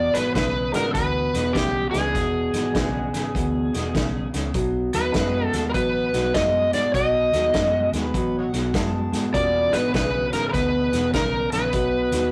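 Rollicking and laid-back, this electric blues shuffle in E mixolydian swings along at 100 BPM, cut from a longer piece, with a bright, overdriven slide guitar up front carrying the melody over a dark, slightly broken-up picked riff from an electric guitar through a small old amp. Beneath them sit a round, foam-muted fingered bass and a vintage acoustic drum kit with a punchy kick, medium-tuned snare and rolled-off top in a pumping small room, while a detuned, jangly honky-tonk upright piano plays in the background from 0.7 seconds. A gritty amplified harmonica with vibrato, scooped notes and tongue slaps adds a brief second line at 8.0 seconds, and the rough rehearsal-room sound carries warm saturation and a wet studio reverb.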